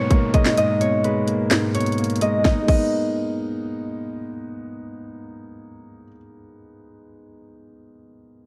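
Menacing and brooding, this short excerpt cut from a longer trap hip hop piece moves in a half-time feel. A dark grand piano sits up front with a smooth, vintage tone and long sustain, carrying the accompaniment through to 8.5 seconds, while a mellow, fingerpicked Celtic harp rings out the melody until 4.5 seconds, both softened by a low-pass filter. A very quiet electronic downlifter sounds in the opening seconds. The trap drum kit enters at 0.1 seconds and is overdriven and up front, with a hard-clipped kick, sharp snare, bright hi-hats, handclaps and crash cymbal, though a break interrupts the beat before the drums stop at 2.8 seconds. The harmony rests on a G#madd9 chord, and a light reverb gives the mix a sense of space.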